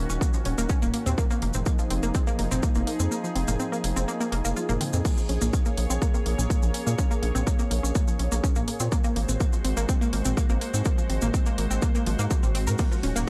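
Melodic techno in a cinematic, hypnotic mood, cut from a longer piece, where a round, deep analog bass and an overdriven, punchy electronic kick sit up front, a detuned, lush unison pluck spins delayed arpeggios, an evolving wavetable pad warbles through sustained chords with chorus and its own reverb, a grainy cabasa adds acoustic texture, and a house drum kit of hi-hats, ride, crash and toms pumps alongside; the kick drops out at 3.1 seconds and returns at 5.0 after a short drum fill, all within a dry, gritty hardware sound.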